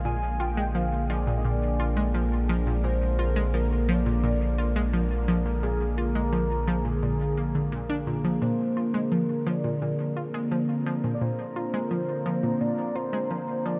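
A morphing wavetable pad with phaser opens this hypnotic, cosmic stretch of sequencer-driven space music at 86 BPM in 4/4, holding a Bb7 chord over a deep sine sub bass and a very quiet, tempo-synced gated texture that pulses beneath. From 0.1 seconds a bright, detuned analog pluck riff joins a shimmering, retro pulse-width lead melody with vibrato and 12-bit sampler grit, both parts carrying chorus and tape echo. At 8.4 seconds the bass and gated texture stop, leaving pad, pluck and lead suspended in a huge ambient reverb with a cassette tape character.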